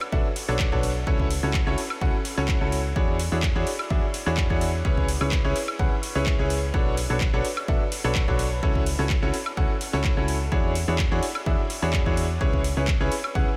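A straight 4/4 pulse at 127 BPM drives this joyful, euphoric piano house excerpt, with a punchy analog kick anchoring a layered garage kit of handclaps, metallic overdriven hi-hats and woodblock. A brilliant, up-front concert grand plays a riff between C#4 and F#5 over Bm9, A6/C#, E13 and C#m7, pumping with the sidechain alongside a round, dark FM bass, while a diffuse delay trails the piano. The mix is dreamy and soaked in a huge ambient reverb.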